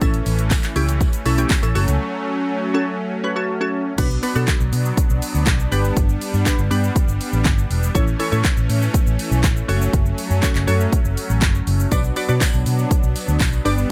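This energetic, bittersweet dance-pop excerpt in B minor opens with everything at once at 121 BPM in a straight 4/4: a glassy wavetable pluck, a soft supersaw holding sustained chords, a vintage muted fingered electric bass and a punchy pop drum kit, with a very quiet, jingly tambourine sitting close and dry until 1.9 seconds. The layered, electronic-sounding kit carries a fat snare, bright hats, handclaps, shaker and crash, and it sits up front with a tape-warm sheen alongside the dark, round, foam-muted bass. The crystalline pluck has a fast attack, short decay, a nasal edge, a noise layer and a filter sweep, thickened by chorus. Beneath it, the smooth, detuned unison supersaw moves with a shifting notch, and the pluck, pad and bass all pump through sidechain compression. After a break from 2.0 to 4.0 seconds, the progression cycles through B minor, G, A and F-sharp minor, and the tambourine returns at 11.9 seconds, all set in a digital ambience.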